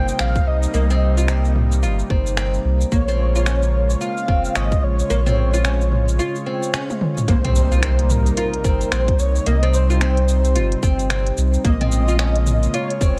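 A deep, round sine sub bass sits up front in this meditative, hypnotic organic downtempo piece, pumping alongside a tight electronic kick. Above them, a breathy, flute-like synth lead carries the melody with a soft attack and vibrato, colored by tremolo, ensemble chorus, cassette tape character and digital delay. A bright, woody oud plucked with a plectrum spins arpeggios through its own delay, while a smooth, detuned sawtooth pad holds sustained chords with chorus, tremolo and sidechain pumping as the harmony moves between Cm7 and Bbm7. An organic electronic kit of cabasa, finger snaps, silky hi-hats and toms gives the groove a swung sixteenth-note feel, moving into a break at 6.2 seconds and a drum fill before a very quiet electronic impact at 7.3 seconds opens the second section. The sound is dry, and the excerpt is cut from a longer piece.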